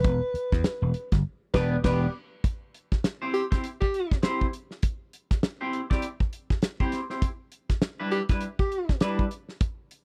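A swung sixteenth-note funk groove in 4/4 drives this sly, dry, close 1970s-style studio cut, with a warm soul drum kit of dark cymbals, a medium-tuned snare and a tight kick playing throughout, a growly, punchy vintage slap bass that drops out at 2.1 seconds, a twangy, picked clean electric guitar with phaser entering at 1.5 seconds, and a breathy, mellow tenor saxophone with scooped notes and light vibrato that returns briefly at 8.1 seconds.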